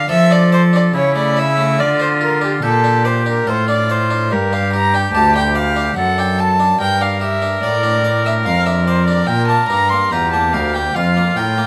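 A nasal, gut-strung period violin leads this flowing, radiant baroque-style sonata fragment at 72 BPM in 3/4 from the very start, up front over a bright, plucked harpsichord and a rich, reedy cello bass line, with a clear oboe joining as a second line just after at 0.1 seconds with light vibrato, all set in light reverb as the harmony moves from D minor toward G minor by 6.8 seconds.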